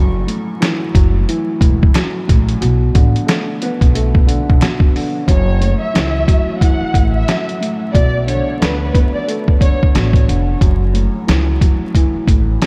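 Vinyl crackle and a light, small-room reverb give this boom-bap hip-hop excerpt a dusty, lived-in sound, and its mood is moody and tough over a swung sixteenth-note feel. A dark upright piano carries the accompaniment from the start, its mellow, vintage tone shaded by cassette-tape coloring and filtering at both ends of its range as it moves between F#m7 and Bm7. Underneath, a woody pizzicato upright bass with steel strings holds the low end, while a compressed, pitched-down sampler-style drum kit sits up front with a thumpy kick, a medium-tuned snare and hi-hat. Very quiet finger snaps, recorded live in a short room, add a human touch between 0.6 and 4.8 seconds. At 5.3 seconds a dark studio violin section brings in the melody, lush and bowed with vibrato and a soft attack, filtered and trailed by a diffuse ambient delay until it drops out at 9.8 seconds while the piano, bass and drums carry on.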